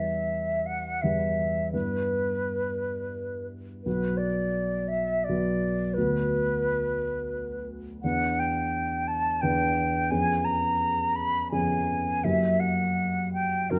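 Close, detailed microphones capture this duo in a moderate scoring-stage reverb, with the flute and grand piano both placed up front. It is a solemn, melancholic romantic classical piece in E minor, played in 3/4 at 85 BPM with a rubato feel and tuned to A4 = 436 Hz. A mellow concert flute carries the melody with an airy tone, vibrato and soft attacks, while a dark baby grand piano accompanies with long sustain, moving from E minor through B minor and E minor seventh to a tense F#7b9 at 12.2 seconds, shortly before this fragment of a longer work breaks off.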